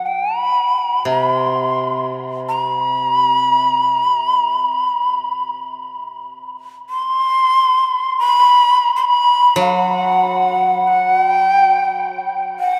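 A breathy, bright shakuhachi carries a solitary, meditative melody up front in free time, its soft, chiffing attack and unsteady vibrato floating high over a dry, woody koto accompaniment plucked low with fingerpicks, all set in a huge, wet ambient reverb that suggests a vast, echoing space, in this excerpt of Japanese traditional chamber music, cut from a longer piece and tuned to A4 = 435 Hz, that slows down from 8.7 seconds.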